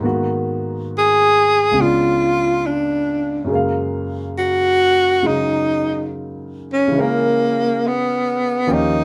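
A breathy tenor saxophone and a concert grand piano begin together in this tender, intimate jazz ballad fragment, swung in four. The saxophone carries the solo melody up front with vibrato, soft attacks and scooped notes, while the piano accompanies with a smooth, vintage tone and deep bass, also sitting close. A moderate club reverb gives the pair a cozy room sound as the harmony moves from G#m9 through C#7b9 to F#maj9 and A#m7b5.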